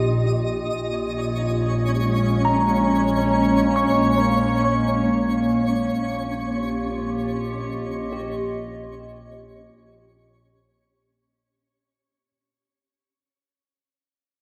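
A wet concert-hall ambience surrounds this reflective, serene ambient excerpt at 68 BPM in 3/4, where a warbling, nostalgic tape-like pad sits up front with chorus, holding detuned chords from Ebadd9/Bb to Bbm7 and back. A bright, clean tine electric piano spins arpeggios through a diffuse delay, while a twinkling granular texture adds octave-up shimmer and a bowed chamber double bass section holds an earthy low Bb1 with light vibrato. The music fades out from 4.2 seconds, the electric piano lingering alone until 12.3 seconds.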